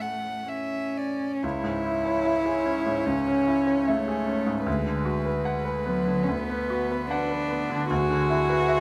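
Moving in a rubato 4/4, this slow, romantic movement for piano trio feels tender and serene, a brief passage cut from a longer piece. The bowed violin carries the melody with an airy, pure sul tasto tone and soft attack, floating above the cello's intimate second line, which sits up front with light vibrato. A brilliant grand piano supplies accompaniment with audible action noise, all set in a moderate studio reverb.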